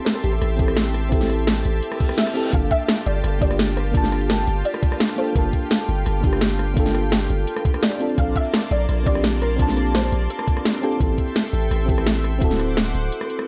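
Dreamy and melancholic, this short cut from a longer liquid drum and bass piece moves at 170 BPM in a straight 4/4, set in G dorian. A soft, round pluck carries the melody from the start until 11.5 seconds, its dark tone treated with ensemble chorus and delay, while a mellow FM electric piano with a noise layer supplies accompaniment through chorus, cassette tape coloring and dub echo. Alongside them, a lush unison pad of detuned sawtooth voices holds thick, warbling chords, roughened with vintage 12-bit sampler grit. The drums sit up front: a compressed, pitched-up electronic kick with a thumpy, gritty punch, and a layered, tape-warm kit of cracking snare, metallic hats and rim clicks re-recorded in a small room, joined by a deep, sine-based 808-style bass with long, decaying notes. A brief reverse cymbal rises at 2.0 seconds, the harmony drifts from Am7 through Gm9 and Bbmaj9, back to Am7 and on to a closing D9, and a short break arrives at 13.1 seconds, all framed by light reverb.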